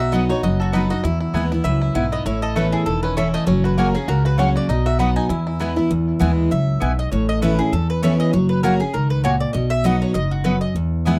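A joyful, virtuosic bluegrass excerpt opens with a twangy, fingerpicked banjo carrying tape echo and a bright, double-string mandolin sharing the melody, over a full-bodied, up-front dreadnought guitar and a dark, thumpy gut-string upright bass; a second, rounder mandolin adds stabs from 0.1 seconds. The banjo drops out at 5.9 seconds as the opening passage repeats, leaving the woody lead mandolin to carry the tune until it stops at 10.7 seconds, and the banjo returns at 11.1 seconds. The swung playing is captured in a dry, close 1970s-style studio sound with light reverb.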